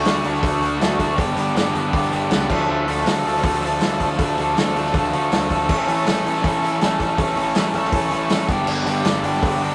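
At a straight 160 BPM in 4/4, this upbeat, carefree indie rock excerpt rides a bright, double-tracked overdriven garage guitar riff up front, with growly picked electric bass and a loose acoustic drum kit of punchy kick, medium-tuned snare, hi-hat and dark crash cymbals, all caught as a rough rehearsal-room recording with light reverb over chords moving from D through G, Dm and A.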